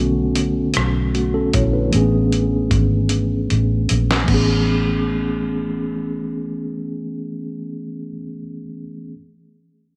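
A mellow tine electric piano and a vintage muted fingered electric bass open this short, sensual slow R&B excerpt in A major, moving at 51 BPM in a straight six-eight. The piano sits up front with a clean, mellow tone heard through its built-in speakers, voicing Bm7 before settling onto Amaj9 at 1.9 seconds, while the foam-muted bass stays low with a dark, round, amped sound. A dusty soul sampler-style drum kit joins at 0.4 seconds, compressed and gritty, with a thumpy kick, medium-tuned snare, rim clicks, hi-hat and crash, all carrying the air of a small room. The drums play a fill from 3.1 seconds and stop at 4.5, leaving bass and piano, and the bass ends at 8.1 seconds while the piano carries on alone until 9.2. Light reverb and digital ambience give the intimate groove a soft sheen.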